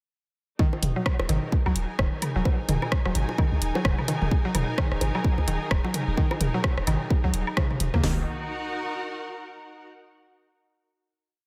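A short, complete minimal techno piece at 129 BPM in Eb minor opens at 0.6 seconds with everything arriving almost at once: a punchy four-on-the-floor house kick with cracking snare, open hats and floor tom, a second kit layer of closed hats and rim clicks, and a woody, round synth pluck cycling a 6-step loop that drifts against the bar. A deep sine sub bass with a pitch-drop attack rolls through a staccato groove up front, while electronic bongos, toms and woodblock add clicks and blips in cross rhythm through an analog delay. Behind them, a distant, lush studio string section holds slowly shifting chords with vibrato, pumping against the kick like the bass and the chorus-treated, cassette-tinged pluck. The swung sixteenths and tape-warm drums give the clinical, sparse mood a slight looseness, and a lush hall reverb soaks the mix in a dreamy haze. The groove rests on an Ebsus4 until 8.0 seconds, when the rhythm parts stop and the strings alone sustain a final Eb minor chord to 9.9 seconds.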